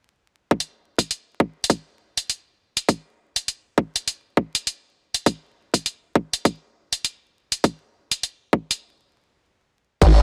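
Funky and playful, this glitch hop excerpt moves at 101 BPM in 4/4 with a 16th-note swing, tuned slightly sharp to A4 = 445 Hz. A tight, layered electronic kick sits up front from 0.5 seconds, its low end trimmed by a high-pass filter, joined at 0.6 seconds by a produced drum and bass kit with crash cymbal and hi-hat. The groove breaks into a stop from 8.8 seconds, and at 10.0 seconds a formant-sweep wobble bass lands on G#1, a detuned blend of pulse and sine with a fast attack, chorus and tube saturation, loud and compressed at the very front of the mix. A faint vinyl crackle and digital ambience hang behind the whole excerpt, lending a dusty texture to the electronic parts.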